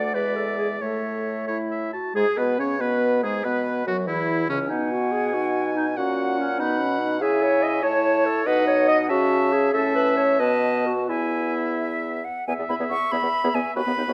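A distant, roomy clarinet stands out in this spirited, graceful classical-period movement for wind quintet in E major, moving in a quick 6/8 at about 85-97 BPM with a rubato feel. A pure silver concert flute with vibrato and a soft attack carries the melody above a clear oboe second line, while a close-miked French horn fills out the accompaniment and a vintage-toned bassoon with light vibrato anchors the bass. All five play throughout in a moderate recital hall reverb, and the harmony reaches an E chord at 11.1 s before the passage, cut from a longer piece, settles on an E5 chord at 12.5 s.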